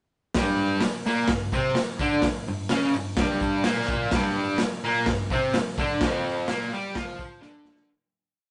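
Raw and rowdy, this short garage rock piece stomps along at 127 BPM in a straight 4/4, running under eight seconds from start to finish. A fuzz guitar carries the octave riff from 0.4 seconds, bright and distorted, double-tracked and up front, spanning F2 to G4 over a G5 chord. The raw garage drum kit of hi-hat, kick and snare drives a garage stomp groove with a punchy kick and medium-tuned snare, its sound gritty and saturated in a small, pumping room with a rolled-off top. A jingly tambourine sits very quietly in the background, compressed and saturated. The rough rehearsal-room recording carries light reverb and tube saturation, with highs capped around 10.7 kHz. The piece fades out from 6.0 seconds, and a drum fill closes it at 7.4 seconds.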